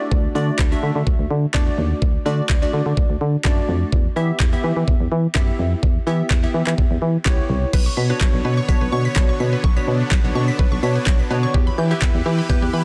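A solid FM bass sits up front from 0.1 s, punchy and round with a fast attack that decays, pumping under sidechain beneath this energetic, confident dance-pop excerpt in B minor at 126 BPM. A smooth R&B drum kit, electronic and produced, drives the straight 4/4 with a knocking kick, a woody snare, handclaps and crash cymbal, carrying a tape-warm, up-front character. Above them a glassy wavetable pluck plays accompaniment from 0.0 s, crystalline and detuned with a noise layer, ring modulation and a moving notch filter, thickened by chorus and also pumping. At 7.7 s the harmony moves from D and Em to Bmadd9 as a lush sawtooth supersaw pad enters with slow-attack sustained chords, joined by a mallet-like synth pluck spinning bright, percussive arpeggios through chorus and digital delay. The mix is dry and dense, with a heavily limited modern master that keeps the energy pressed forward.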